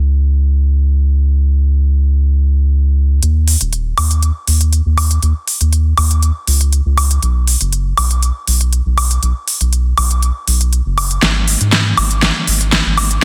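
Bittersweet and dreamy, this progressive house excerpt moves at 120 BPM in a straight 4/4, opening with a round analog bass alone, deep and dark, with a fast attack and sustained tone that sits up front from Eb1 to Ab2. At 3.2 seconds a layered electronic pop drum kit joins for a build-up, its fat snare, crisp hats and woodblock softened by low-pass filtering, leading into a drum fill at 11.2 seconds. Light reverb and digital ambience surround a dense, heavily limited modern master.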